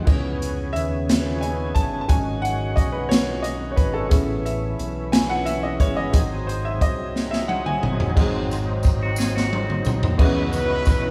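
Up-front, punchy big-band drums drive this slow, soulful gospel passage in a swaying 6/8, the airy, polished kit rolling through fills at 7.2 and 9.2 seconds. An intimate baby grand piano carries a clear solo through the opening, its action noise audible, over a dark, round fingered electric bass and a thick, gritty tonewheel organ holding sustained chords through a slow rotary speaker with chorus vibrato and key click. At 8.2 seconds the organ steps forward for its own fervent solo, and a jingly tambourine joins soon after. A bright, twangy guitar line slips in at 9.0 seconds, and at 10.2 seconds a tight horn section takes the melody in octaves with light vibrato. The band sounds like it is playing live together in a large studio with moderate reverb, and the fragment is cut from a longer piece.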